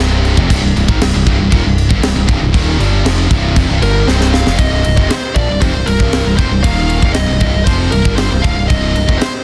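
Heavy metal in C minor at 117 BPM, dark and heavy, where two bright, picked, distorted rhythm guitars riff in the background beneath a growling, round, punchy overdriven bass up front and a tight acoustic kit with bright cymbals and a high-tuned snare. A dark, high-gain lead guitar melody enters at 3.8 seconds, and a drum fill at 4.1 seconds then leads into a new section at 4.6 seconds, all in a small room with a dense, heavily limited master and faint mains hum.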